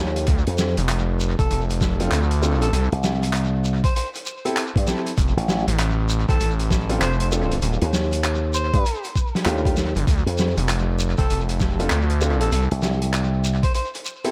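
Gritty and swaggering, this glitch hop excerpt moves at 98 BPM in 4/4 with a 16th-note swing, set in D minor pentatonic over chords that pass from Dm7 through C6, F6 and Eb before dropping out at 12.5 seconds. The low end doubles up: a bright, punchy slap bass pushed through an envelope filter sits up front alongside an aggressive, evolving synth bass built on sawtooth tones with oscillator sync and a plucky filter, saturated. An overdriven, thumpy electronic kick drives hard from 0.3 seconds, while a crunchy breakbeat kit with handclaps, hi-hat and a high-tuned snare sounds dark and rolled-off, its hits trailed by tape echo. A close, grainy shekere murmurs in the background. An amplified harmonica takes the jazzy solo from 1.4 seconds, with light vibrato, scooped notes and tongue slaps, and from 2.0 seconds short grand piano stabs pump with sidechain compression and echo into a studio ambience with light reverb.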